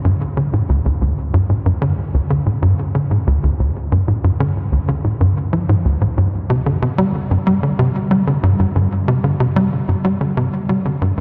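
Ambient music in D minor at 93 BPM in 4/4 with a straight feel, expansive and cosmic in mood. A lone tight sequencer bass carries the whole passage, playing solo from 0.0 to 11.2 seconds across a range from D2 to G3. Its tone is punchy and nasal, built from sawtooth and square waves with a filter pluck, a fast attack and a decaying tail, and it sits up front in the mix. Analog chorus, cassette tape coloring and delay shape the sound, which is set in a vast, echoing space with a cathedral reverb that rings for 6.9 seconds. Cut from a longer piece, the passage fades out between 9.6 and 11.2 seconds.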